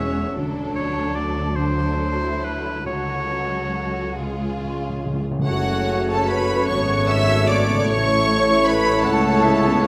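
A moderate scoring-stage reverb gives this slow, rubato orchestral passage in F# minor a spacious, solemn glow, its yearning 6/8 lilt moving at about 45-52 dotted-quarter beats per minute in a short cut from a longer romantic movement. From the start, a rich violin section with light vibrato carries the intense, smooth-topped melody, while a bright oboe and a second, lush violin section shape supporting lines. Violas and an expressive cello section fill the background, a clear, distant double bass section anchors the bass, and a very quiet concert harp adds ringing, thumb-plucked arpeggios. Round, soft-malleted timpani on calf heads enter at 2.9 seconds and play a fill before the harmony turns back to F# minor at 5.4 seconds, where the winds and brass join. A mellow, airy flute, a dark bassoon, dark horn and trombone sections holding sustained chords, brief bright trumpet stabs and a mellow tuba deepen the texture, with a clear, roomy clarinet adding its line from 6.7 seconds as the chords move to A.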